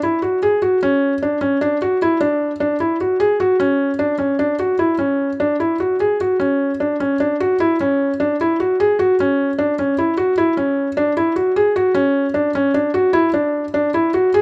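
Set in a straight 7/4 at 151 BPM, this restless, pensive contemporary instrumental excerpt features a felt-muted upright piano playing alone for its full 14.4 seconds, staying within a narrow span from C#4 to G#4 and tuned to A4 = 441 Hz. The piano sits up front with an intimate, vintage character: its thin felt gives a soft, mellow tone, and the audible action noise is caught by close, detailed microphones. A light reverb adds a touch of space around the instrument.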